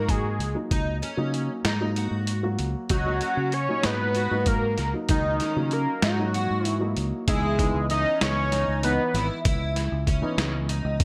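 A fat, detuned analog lead carries the melody from the start, its sawtooth edge and sub octave sitting up front under chorus and phaser, while a dark, intimate baby grand piano with audible action noise supplies accompaniment and a shimmering, octave-doubled twelve-string acoustic guitar spins arpeggios beneath it. This is brooding, intricate progressive instrumental music in 7/8 at 192 BPM counted in eighths, set in C# dorian. A round, punchy fingered electric bass and a gritty, pitched-down boom bap sampler-style kit with a thumpy kick and high-tuned snare drive the uneven meter, the drums overdriven and compressed. At 7.3 seconds the harmony shifts from D#m/C# to C#m7, and a very quiet, raspy trombone adds a growling second line with scooped notes and vibrato until the lead drops out at 9.3 seconds. Moderate plate reverb and a small room frame the bright 1980s-style digital production, and the passage is cut from a longer piece.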